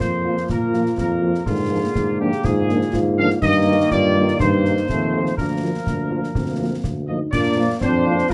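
A rousing, spirited military-style march for wind band in Bb major, moving at 123 BPM in a straight 2/4 and cut from a longer piece. A mellow, tight trumpet section with light vibrato carries the melody up front, while a clear tuba anchors the bass and a euphonium with vibrato sings a second line behind it. Warm trombones hold sustained chords, a dark, punchy French horn section adds accompaniment from 0.2 seconds, and concert snare, bass drum and bright clash cymbals sound close and dry, all under light reverb with detailed close miking.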